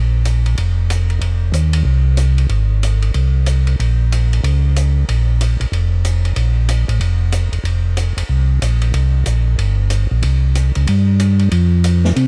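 A brisk, swung 4/4 groove drives this bluesy, soulful soul jazz organ trio excerpt, cut from a longer piece. A mellow tonewheel organ carries the bass line from the very start, sitting up front with a round, dark tone, a touch of key click and a slow rotary speaker effect. At 0.3 seconds a swinging big-band drum kit joins, keeping time on hi-hat, ride cymbal and a medium-tuned snare, its natural acoustic sound set further back in the mix than the organ. Both parts play through to 12.3 seconds in a single unbroken section. The sound is dry and close, with little reverb, in the manner of a 1970s studio recording.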